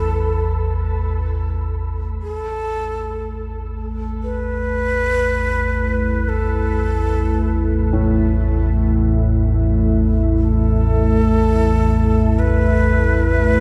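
A deep, rumbling drone sits up front from the start alongside a detuned, chorused sawtooth pad holding sustained chords and a faint, airy wind-like noise texture that drops out at 2.2 seconds, setting an ominous, dark ambient mood in free time over an Asus2 chord. A breathy, bright shakuhachi carries a narrow bamboo melody with vibrato and diffuse echoes, while a warm baby grand piano plays low arpeggios in the background through the same ambient delay. The production is dark and warm, enveloped in a huge, wet reverb, and this excerpt is cut from a longer piece.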